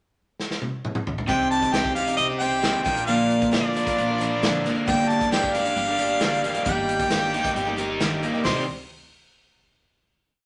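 A vibrato-laden harmonica sings scooped, motif-based call phrases up front in this wistful, reflective folk and heartland rock piece, opening after a drum fill from 0.4 seconds on a natural country kit with a punchy kick and pop groove, while a shimmering, octave-doubled twelve-string acoustic strums sixteenths in open chord shapes, a double-tracked overdriven electric guitar plays bright picked arpeggios, and a woody pizzicato upright bass thumps a dotted figure in the background, all bathed in a wet studio reverb before settling on a final chord at 8.5 seconds.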